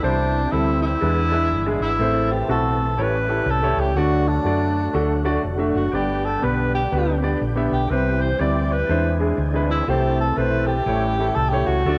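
A home cassette recording with light small-room reverb frames this hopeful, uplifting slice of uptempo gospel at 122 BPM, swinging in 4/4 over a progression that moves from C through E7, Am and A7 to D and G. A breathy tenor saxophone carries the melody up front, mellow and intimate with subtone, scooped notes and vibrato, while a natural grand piano supplies the accompaniment and a round, punchy hollow-body electric bass anchors the low end. Behind them, a gritty overdriven tonewheel organ with fast rotary speaker and chorus vibrato holds thick chords, and a very quiet, distant French horn section sustains soft, tight harmonies.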